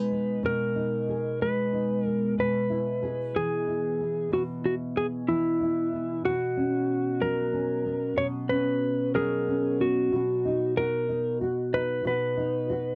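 A clean electric lap steel guitar carries the melody up front, its slide tone dark and compressed, played with fingerpicks. Beneath it, a double-tracked nylon-string guitar plays a full-bodied, thumb-plucked accompaniment with a deep classical character, also placed close and forward. This tender, swaying pop piece moves in 6/8 at 62 BPM, counted in dotted quarters, in B major. The harmony rests on a B bass, moving from G#m/B to E/B and F#/B before settling on a plain B chord as a brief second section begins at 10.1 seconds. The dry, close sound has a 1970s studio feel with a moderate booth ambience, and the passage is cut from a longer piece, ending at 12.9 seconds.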